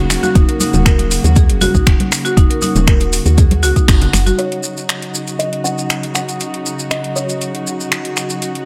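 A straight 4/4 afro house groove drives this hypnotic piece, with a deep, up-front electronic kick, finger snaps and metallic hi-hats from an afro-pop kit, ringing congas tucked in the background, and grainy, close maracas, while a round, woody FM bass pumps underneath. Hard-mallet rosewood marimba arpeggios with dub echo and intimate sul tasto chamber strings holding dark, pumping, filtered chords fill the first half. After a band accent at 3.9 seconds, the kick, bass, congas and marimba fall away, and from 4.4 seconds a soft, buzzing kalimba with a hollow-box pluck carries the melody through dub echo over the strings, snaps and maracas in a small room.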